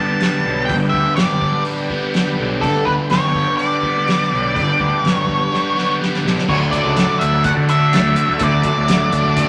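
Hypnotic and kaleidoscopic, this psychedelic rock excerpt moves at 124 BPM in a straight 4/4, with a dark, up-front octave-fuzz lead guitar carrying the melody over a gritty overdriven tonewheel organ holding thick chords through a slow rotary speaker and chorus vibrato, a bright double-tracked stack guitar playing a phased, overdriven riff, a round fuzz bass entering at 0.5 seconds, and a soft-mallet drum kit with a boomy kick whose fill from 5.5 to 6.5 seconds leads the harmony from G to D in a moderate studio reverb.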